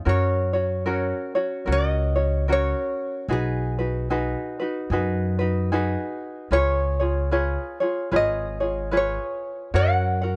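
This Hawaiian piece moves at an easygoing 74 BPM in 4/4, with a gentle swing on the eighth notes and a sunny, dreamy mood in F# major. Two acoustic tenor ukuleles, both fingerpicked, share the upper register. One supplies light accompaniment from the start, while the other sits up front and carries the melody from 0.1 seconds. Beneath them, a pizzicato upright bass on steel strings lays down a woody, growly, thumpy foundation, also placed close in the mix. The harmony moves from F# through B6 and C#7 and returns to F# at 9.7 seconds. The sound is dry and intimate, like a close 1970s studio session, and this short excerpt breaks off at 10.4 seconds.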